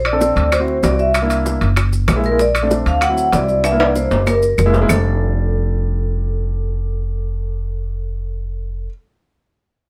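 A brisk, straight 4/4 Afro-Cuban jazz groove at 192 BPM in F major, sophisticated and lively, is set by dry, woody claves, round low-tuned bongos and grainy maracas sitting in the background, joined by ringing vintage metal-shell timbales, and a drum fill from 3.6 s leads up to the percussion stopping at 5.0 s. Up front, a thumpy pizzicato upright bass with steel strings anchors the low end, while a warm grand piano with short sustain accompanies through Bbmaj9, D9, C9 and Gb9 chords that resolve to F6 at 4.9 s. Over the top, a metallic vibraphone played with medium mallets carries the melody with a medium motor vibrato, all in light reverb.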